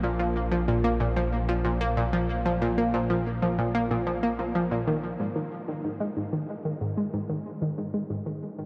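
Cosmic and luminous, this short cut from a longer piece of ambient, sequencer-driven space music moves at 93 BPM in a straight 4/4. An analog pluck carries the riff between Ab2 and Bb3, sitting up front with a bright, round tone built from sawtooth, square and triangle waves over a noise layer, edged by ring modulation and shimmering with chorus and tape echo. Beneath it, a fat analog bass holds a sustained Bb1, its thick, detuned sawtooth given a filter sweep and a glow of tube saturation until it drops out at 5.2 seconds. The harmony shifts from Bb5 to Ab5 at that point as the music moves into a second section, where a filter sweep colours the synth arpeggio sound through to 8.7 seconds. A huge, wet reverb with an 8.1-second tail places the parts in a vast, echoing space.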